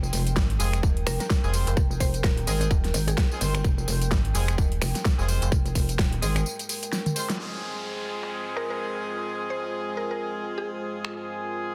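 A swung 128 BPM groove in 4/4 drives this bouncy, aggressive bass house cut in F minor, taken from a longer piece and resting on an F minor chord. A tight, up-front electronic kick anchors the drop alongside a big-room dance kit of finger snaps, metallic hats, a huge snare, tambourine and toms, overdriven and filtered, with a short drum fill closing out a break. Two up-front basses growl beneath: a saturated, chorused wobble bass with a sine-and-FM core, and a decaying, mellow FM bass that drops out at 5.5 s. A deep, moody sawtooth pad with a sub octave holds sustained chords through phaser and chorus, while a brilliant pop-style horn section fires delayed stabs with light vibrato and sidechain pumping. A woody, round mallet-like pluck sits in the background with its bright melody, returning at 8.6 s as a downlifter sinks from 7.4 s and the drums sweep through a filter. The dense, heavily limited master carries light reverb.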